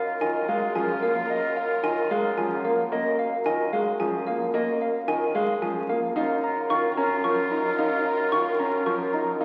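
Set in a straight 3/4 at 111 BPM, this hypnotic, propulsive piece of minimalist classical pattern music in F# major lays a dark, clean electric guitar melody over background marimba arpeggios, a vibrato-tinged bassoon bass, smooth up-front grand piano accompaniment and dry, woody xylophone arpeggios, while a distant oboe second line and a lush bowed violin section holding sustained chords drop out at 2.7 s and return at 6.2 s as the harmony moves from F#maj9 to D#sus2/F#, the whole heard through wet concert-hall reverb and the crackle of a very old 78 rpm record.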